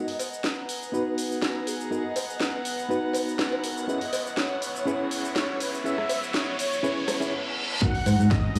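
A straight 4/4 groove at 122 BPM drives this groovy, sensual nu-disco build in G# minor, with an overdriven house drum kit of cracking snare, bright hats, rim click and shaker up front and a cowbell sitting in the background. A thick, detuned sawtooth unison lead carries the melody through a filter sweep with analog chorus and delay, while a reedy, worn electric piano with fast tremolo and slapback echo and a gut-string chamber violin section pumping with sidechain hold G#m9 and F#7sus4 chords as a riser builds and a reverse cymbal sounds. At 7.8 s an impact lands alongside a punchy electronic kick and an up-front fingered electric bass with tube saturation, inside a lush hall reverb.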